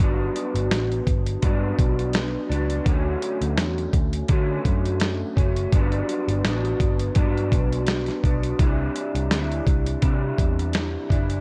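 A gritty, compressed sampler-style drum kit with a thumpy kick and medium-tuned snare sits up front in this lonely, mellow indie and bedroom-pop excerpt at 84 BPM with a light sixteenth-note swing, playing from the start alongside a dark, slightly broken-up, lo-fi electric guitar through a small old amp with analog chorus and vibrato, and a round, foam-muted picked bass, cycling through Gmaj7, Dmaj7, Gmaj7 and Cadd9 under a cassette-tape sheen and digital ambience.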